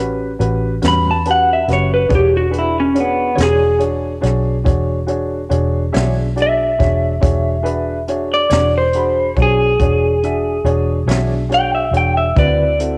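A slow blues in 12/8 at 47 BPM counted in dotted quarters, this gritty, laid-back excerpt moves with a straight feel over A13, E13 and D13 chords. The jazz brush drum kit enters at 0.4 s, pairing a boomy kick and a high-tuned snare with hi-hat in a natural studio-room sound, while a vintage muted fingered electric bass sits up front, dark, round and punchy with its foam-muted, amped tone. A woody, boxy upright piano comps in the middle register, and a mellow electric guitar with tremolo stays clean and dark in the background from 0.8 s. The lead is an electric guitar through a small old amp, slightly broken-up, compressed and lo-fi, carrying the melody up front with spring reverb until 12.8 s. The piano, drums and background guitar carry a cassette tape coloring, and the whole home recording on cassette keeps the room dry.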